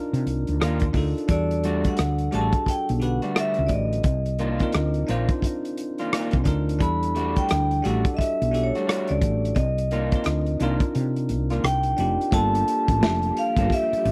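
Ringing vibraphone carries the melody in this smooth, soulful neo-soul R&B excerpt at 87 BPM with a swung sixteenth feel, over a gritty, saturated breakbeat kit whose punchy kick drops out from 10.9 to 12.3 seconds, a growly, woody fretless bass, bell-like tine electric piano chords moving between Cm11 and Em11, a slightly broken-up guitar line through spring reverb, and shimmering string-machine violins that arrive at 12.3 seconds as the harmony shifts to Gm9, captured in a dry, close 1970s-style studio sound.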